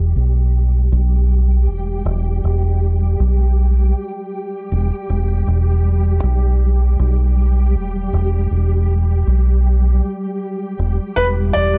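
A lightly swung trip hop groove in 4/4 rests on a round, up-front dub electric bass beneath a flickering, grainy granular texture washed in its own reverb, and in the closing moments at 11.2 s a soft, felt-muted upright piano and a detuned, chorused analog pad arrive, deepening the dark, melancholic mood of this short cut from a longer piece.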